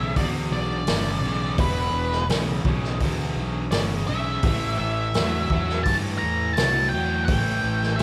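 A dark, fuzzed-out octave lead guitar carries the melody in this brooding, gritty blues rock and southern rock passage at 84 BPM in E minor, cut from a longer piece. Beneath it, a double-tracked, overdriven electric guitar picks a low riff and a growly, bright fuzz bass holds the bottom, while a vintage acoustic drum kit with a punchy kick and a rolled-off top enters at 0.2 s on hi-hat, kick and snare. The band plays live together in one large studio room with moderate reverb, moving from Em7 to A7(no3) at 4.4 s.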